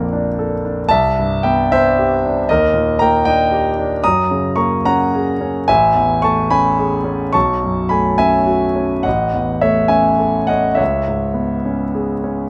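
Impressionist classical solo piano, serene and hazy, unfolding in a free rubato across this 12.5-second excerpt cut from a longer piece. A concert grand carries everything alone, ranging from deep bass to high upper notes with long sustain, its sound warm, intimate and up front, polished yet touched by audible action noise under light reverb. Lush extended harmonies such as Bbmaj7, F#add9 and B9sus4 drift from one to the next before settling on C#m7.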